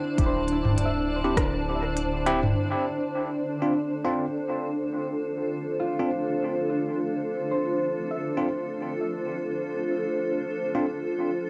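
A swung 4/4 groove of layered electronic kick, a crisp-hatted, tape-warm drum kit with rim clicks and toms, and a round, soft dub sub bass enters at 0.2 s in this spacious ambient dub excerpt but falls away by 2.5 s, leaving a cloudy, evolving granular pad of detuned unison sines and thumb-plucked concert harp arpeggios dulled by a low-pass filter and tape echo, while a bell-like tine electric piano places clean, up-front stabs soaked in dub echo and plate reverb from 1.2 s as the harmony settles onto Dm7 at 2.6 s in a deep, homespun cassette recording.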